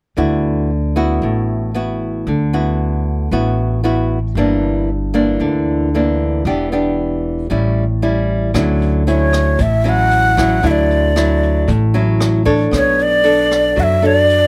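A light reverb surrounds this bossa nova recording, a sunny and breezy passage taken from a longer piece. From the start, a small-sounding fingerpicked nylon-string guitar sits up front with a plucked upright bass, whose steel strings give it a woody, growly tone, moving through D69, Gm6, Em7 and A7. At 8.5 seconds the second section opens on Dmaj9, later shifting to Bm9, as a jazz drum kit played with brushes enters in a natural studio room, marked by hi-hat, rim clicks and a boomy kick. At 9.1 seconds a bass bansuri takes the melody, the loudest voice in the mix. Close-miked and bamboo-toned, it is airy and bright, with a soft attack, vibrato and an unsteady quality.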